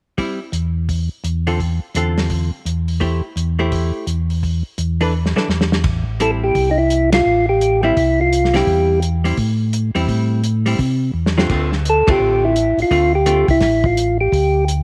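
A swung 4/4 groove at 170 BPM drives this bluesy, smoky soul jazz organ trio excerpt in A minor, cut from a longer piece. The drum kit sounds dry, muffled and lo-fi, with dark cymbals, a medium-tuned snare and a tight kick, and it adds fills at 5.1 and 11.1 seconds. Underneath, a round tonewheel organ handles the bass line with audible key click and a slow rotary speaker, sitting up front in the mix. A clean, picked hollow-body archtop guitar, dark and compressed, supplies accompaniment from 0.2 to 13.5 seconds over chords moving through Am7, Dm7 and E7sus4. A second organ voice, percussive with third harmonic percussion and the same slow rotary, carries the melody in two short phrases beginning at 6.2 seconds, while the band hits accents together along the way. Light reverb gives the whole a small-room feel.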